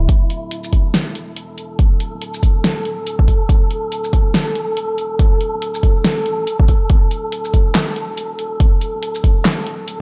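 Meditative and cavernous, this deep dubstep excerpt moves at 141 BPM in 4/4 with a half-time feel and a 16th-note swing of 58%, building up across its full ten seconds. A soft, round sub bass sits far down in the low end from the very start, holding sustained tones between D1 and A1 with a high-pass filter trimming its lowest edge. Alongside it, an airy, wind-like tuned noise texture breathes on A4 with a slow attack, its dark haze bathed in its own reverb. From 0.1 s, an electronic kick drum punches up front with a deep, tape-warm weight, dropping away at 9.3 s. A deep house kit of handclaps, hi-hat, shaker and a fat snare shares that close, small-room character, giving the drums a warm, re-recorded feel against the spacious noise texture, all under a light overall reverb.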